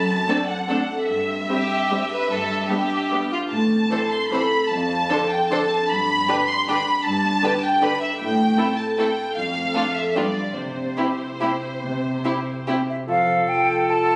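A muted symphonic violin section opens this sweeping, festive classical passage in 3/4, carrying the melody in a dark, veiled tone with vibrato and a soft attack, placed close and up front. Beneath it, a concert harp rings out fingerpicked arpeggios, and a con sordino cello section holds the bass with a smooth top, while a chamber violin section adds a second line and a distant, lush viola section fills in the accompaniment. The tempo moves between 135 and 168 BPM with a rubato feel in C major, and the strings drift through a chord progression that settles on C before thinning out. At 12.9 seconds a bright silver concert flute takes over a second line, airy and expressive with lifted highs, sitting prominently forward. From 13.1 seconds a clear oboe, a roomy, warm-toned clarinet and a briefly sounding French horn section in the background join over an F chord as the fragment breaks off. 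A moderate scoring-stage reverb surrounds the ensemble, heard through a phone recording in the room with added reverb and compression.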